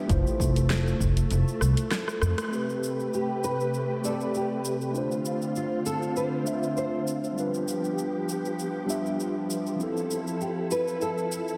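A dreamy, reverb-soaked mix sits in a lush digital hall, giving this relaxed sunset chillout cut, taken from a longer piece, a soft, floating glow at 99 BPM in 4/4 with a gentle sixteenth-note swing in A minor. A mellow, clean tine electric piano carries the accompaniment through delay and a low-pass filter, while a silky vintage string machine holds slow-blooming, chorused chords up front over a progression that moves from Fmaj7 through Am9, Dm7 and G7 back to Fmaj7. At the start, a woody, pizzicato upright bass with tube saturation and a punchy, layered electronic kick anchor the groove. The kick drops out at 1.1 s and the bass by 2.3 s, as a drum fill and a brief break lead into a band accent. A produced deep house kit of hi-hat, rim click, shaker and a fat snare keeps the pulse going, and from 2.5 s a filter sweep moves across the electric piano. At 3.1 s a warm, thumb-plucked classical nylon-string guitar enters with the melody, shimmering through chorus and delay.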